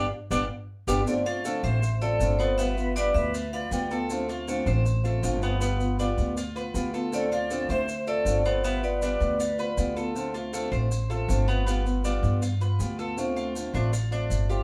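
Heard as a band playing live together in one small, boxy room, the recording carries a wet, short room reverb. This sunny excerpt of Cuban son and guajira in a straight four is cut from a longer piece and opens on a band accent before settling into a pull between Dm7 and G7. Up front, the upright bass gives woody, thumpy, gut-string pizzicato, while a fingerpicked swing-style acoustic guitar picks out a warm accompaniment and a Cuban tres picks arpeggios on metallic double strings, some doubled at the octave. Grainy, mellow maracas join quietly at 0.3 s. A vibraphone struck with hard mallets rings out the melody with a medium motor vibrato in two phrases, from 1.1 s and again from 7.1 s, and a breathy, bright metal jazz flute adds a second line beneath it, with a crisp, chiffy attack and a reedy edge.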